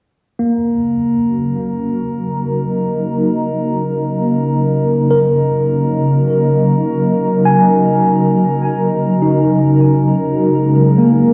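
Serene and melancholic, this slow ambient excerpt at 51 BPM rests on an Ebm7 chord in Eb minor, with a clean tine electric piano playing arpeggios through a combo amp, touched by phaser and diffuse delay. Up front, a shimmering, ethereal pad holds sustained chords with an octave-up shimmer, granular and evolving under chorus, phaser and its own reverb. A glassy, pure glass harmonica fades in from 0.4 seconds as a soft, beating texture in a boxy small room, all set in a dark production with a long concert-hall tail.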